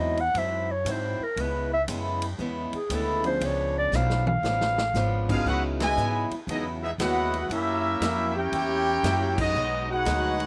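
A dry, outdoor-recorded big band swing excerpt at 117 BPM with a brassy, dramatic mood, settling into C# minor at 5.5 s. A breathy, whispered clarinet with scooped notes takes the opening solo over picked, boxy acoustic guitar, woody pizzicato upright bass and a swinging drum kit with a boomy kick, while an intimate grand piano with audible action noise joins at 3.2 s and a drum fill arrives just before the clarinet hands over. At 5.3 s a bright trumpet section with slapback echo takes the melody, backed by a mellow trombone section on a second line, with band accents at 5.7 and 9.3 seconds.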